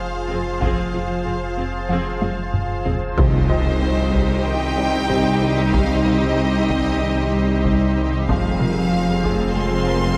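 A steady 94 BPM pulse in straight 4/4 drives this brooding, futuristic film cue, a hybrid of orchestra and electronics cut from a longer piece and sitting in F minor before moving to C minor at 3.2 seconds and returning to F minor at 8.3. From the outset a deep sine sub bass with an octave layer, a calm, warbling organ-like drone with chorus and built-in reverb, a smooth studio violin line and a worn, very quiet baby grand piano set the ground, soon joined by background cellos, double basses and an intense viola section. A juicy, squelchy blip pluck with a phaser plays very quiet arpeggios, while a close, dry taiko ensemble with heavy sticks plays in the background and moves into a drum fill between 2.2 and 3.2 seconds. That fill lands on a huge, dark impact as a focused, lush violin melody enters high above, supported by a very quiet section of mellow French horns holding chords. The whole cue is bathed in a wet scoring-stage reverb that gives it a dark, warm production.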